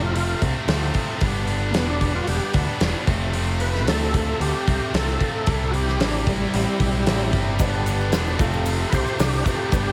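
Confident and sunny, this classic rock excerpt moves at a straight 4/4 pulse, with an overdriven tonewheel organ carrying a solo melody throughout, its thick, gritty tone shaded by key click, chorus vibrato and a slow rotary speaker. Beneath it, a second tonewheel organ holds very quiet, lightly overdriven chords, also through a slow rotary speaker. Two tight distorted guitars, bright and picked, sit in the background playing a riff, while a growling picked electric bass with overdrive stands up front. A big rock drum kit with hi-hat, kick and snare enters at 0.2 seconds, sounding acoustic and mid-forward with a tight kick and rolled-off top in a big room. At 7.6 seconds a detuned, jangly honky-tonk upright piano adds woody accompaniment in the background, joined by a grainy, very quiet tube shaker, all set in a small room ambience over a progression moving among Fadd9, G and C.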